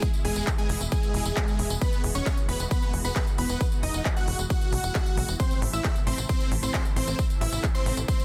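A huge, detuned supersaw chord melody with tape echo and sidechain pumping sounds from the very start of this uplifting, euphoric trance excerpt at 134 BPM in E major, together with a punchy, overdriven electronic kick, a crisp big-room kit of handclaps, hi-hat and tambourine, a silky chorused string pad and an airy supersaw stab line in the background, while a tight, nasal sequencer bass drives in at 0.2 seconds before the harmony shifts from E to A minor at 5.4 seconds in a dense, heavily limited modern master.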